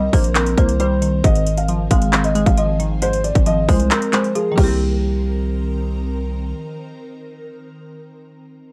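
A half-time trap groove in 4/4 drives this dark, menacing hip hop fragment, with an overdriven electronic drum kit of hard-clipped kick, metallic hi-hats, handclaps and crash sitting up front until about 4.7 seconds, its kick dropping out from 3.9 seconds, while a growling, buzzy 808-style bass carries the low end until 6.5 seconds. A mellow, boxy concert grand piano plays the filtered melody, stopping at 6.1 seconds, over a glassy, crystalline wavetable pluck with chorus and filter sweeps, and an ethereal, airy pad that holds detuned chords through phaser and its own reverb. The recording is dry and gritty, moving between minor-seventh and sixth chords.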